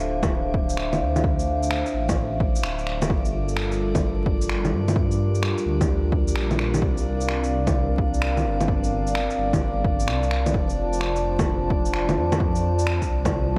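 Ghostly and wistful, this excerpt of swung future garage sets a nasal, moody analog pad up front, its sustained chords moving from Dm9 through Gm9 and C9sus4 to F6, while a rumbling detuned saw bass with tube saturation pumps beneath it under a punchy, overdriven electronic kick. Electronic shaker, bongos and finger snaps, re-recorded in a large room, keep the groove until 13.3 seconds, and a calm, glassy texture of drifting overtones sits in the background from 0.1 seconds. Vinyl crackle and a light digital ambience surround the whole piece.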